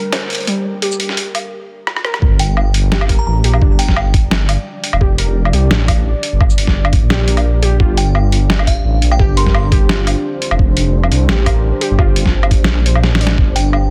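A rumbling, detuned saw bass arrives up front at 2.2 s with a thumpy, pitched-down kick for the drop of this tense, cinematic half-time drum and bass excerpt at 172 BPM in G minor. They join a moody, sustained background pad with sidechain pumping, a warbling lo-fi pluck playing arpeggios through tape echo after its filter sweep in the build-up, and a gritty boom bap sampler-style kit of hi-hat, rim click, shaker, snare and woodblock. Brief glassy FM bell melodies with digital delay follow from 2.4 s, all set in a dense, heavily limited master.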